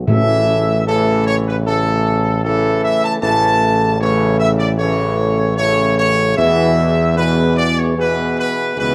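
Recorded close and detailed in a large studio with moderate reverb, this regal, majestic classical brass passage at 76 BPM in A major, cut from a longer piece, sets a mellow trumpet section with light vibrato up front on the melody over smooth-topped French horn chords in the background, bright trombone chords and a clear solo tuba on the bass, with articulate hard-mallet timpani heard only from 0.1 to 1.2 s and the harmony moving from A to E at 6.4 s.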